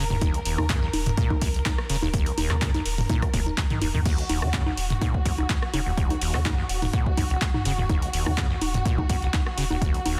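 A dense, heavily limited master with digital ambience frames this raw, hypnotic acid house passage, cut from a longer piece and resting on one chord throughout. A squelchy, resonant sawtooth acid bass riff with a lush chorus rides over a round sine sub bass, while a dark, woody studio string section holds bowed chords with vibrato, and all three parts pump to the sidechain. Up front, a dry, overdriven analog drum machine with congas, handclaps, hi-hat, rim clicks, toms and crash cymbal joins at 0.1 seconds, followed at 0.2 seconds by a punchy electronic kick drum, also overdriven.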